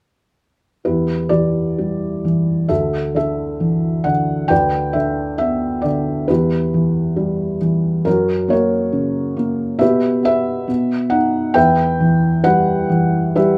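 Classical solo piano in E minor at 67 BPM with a rubato feel, this dark, wistful excerpt from a longer piece features a felt-muted upright piano, soft, mellow and intimate with audible action noise, placed up front under close, detailed microphones and light reverb, moving from Em through Dsus2, G6/D, F# and B before settling back on Em at 11.6 seconds.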